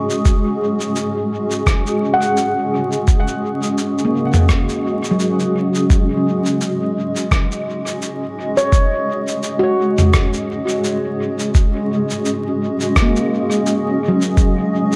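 Spacious and deep, this ambient dub excerpt at 85 BPM with a swung 4/4 feel floats on a cloudy, evolving granular pad of mellow, blurred sustained chords, while an up-front, thumpy electronic kick and a muffled lo-fi sampler kit of rim click, shaker and toms, steeped in dub echo, carry the groove, and a ringing, meditative handpan enters at 2.1 seconds with band-limited arpeggios trailed by tape echo, all set in spring reverb with a bed of vinyl crackle.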